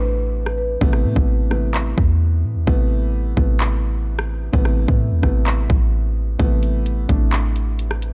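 Melancholic and hard-hitting, this half-time trap excerpt in A minor at 129 BPM opens on an Amadd9 chord, with a brief delayed phrase from a mellow soft-mallet vibraphone ending by 0.8 s over a worn, boxy baby grand piano and a deep, boomy 808-style bass, while an up-front trap kit of hard-clipped kick, metallic hi-hats, handclaps and rim clicks enters at 0.5 s, all set in a small, dark room.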